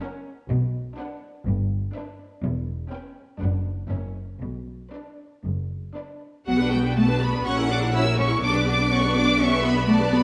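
Opening on the violins and violas together, this stormy, urgent B minor string-orchestra movement in a quick classical style at 123 BPM sets a soft-attacked violin melody high above a smooth, even second violin line and expressive, lush violas, with cellos and a clear, up-front double bass section entering at 0.5 seconds beneath chords that turn from B minor through G6 and F#7, all carried by a stone room's reverberant ambience in this brief cut from a longer piece.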